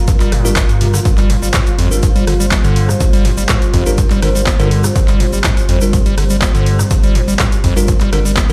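This excerpt opens on a dark, detuned analog pad holding a Gm7 chord over a thick sub bass, both pumping against the sidechain, in a hypnotic, driving acid house groove at 123 BPM in G minor. At 0.1 seconds a squelchy, resonant square-wave acid bass riff arrives with tube saturation and dub echo, joined by a punchy electronic kick and a tape-warm analog drum machine supplying handclaps, hi-hat and rim clicks. A grainy tube shaker sits low in the mix, adding a mellow acoustic texture. From 0.4 seconds a bell-like tine electric piano cuts through with clean, bright stabs trailing dub echo. The whole track sounds as if played on a big sound system in a bare stone room, giving it a cavernous, reverberant ambience.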